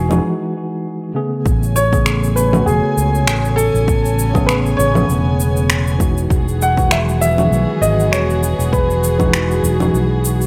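Relaxed and blissful, this swung sunset chillout excerpt opens with a filter sweep on a worn, slightly out-of-tune tine electric piano, while a mellow grand piano with long sustain carries the melody, both touched with delay. Alongside them a dark, intimate string section holds bowed sul tasto chords with light vibrato, and a growly, punchy fretless bass sits up front with tube saturation. Overdriven electronic congas, shaker and finger snaps arrive at 0.1 seconds, a deep overdriven electronic kick joins at 1.5 seconds, and light reverb with digital ambience frames the whole.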